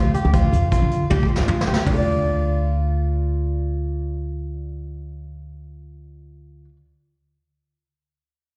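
Progressive instrumental band music in 5/4 at 156 BPM in D minor, driving and tense, cut from a longer piece and heard as a live gig through the venue's PA with recital hall reverb and a dull top end, where a dark, shimmering, octave-doubled fingerpicked twelve-string acoustic guitar plays arpeggios with slapback echo over a woody pizzicato upright bass held up front, while a vintage brush drum kit with a punchy kick and medium-tuned snare plays a fill from 1.1 to 1.9 seconds and stops at 2.0 seconds.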